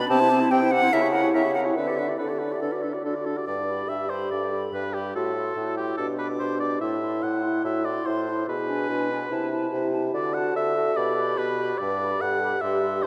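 A bright, airy silver flute carries the melody above this spirited, cheerful classical-period movement for wind quintet, its vibrato expressive and its attack soft. Beneath it, an up-front oboe with vibrato sings a second line, and a clear, present bassoon holds the bass. A mellow, close-miked French horn and a punchy, vintage-toned clarinet supply accompaniment from the background, all within the long, wet reverb of a vast, echoing cathedral, in a passage cut from a longer piece.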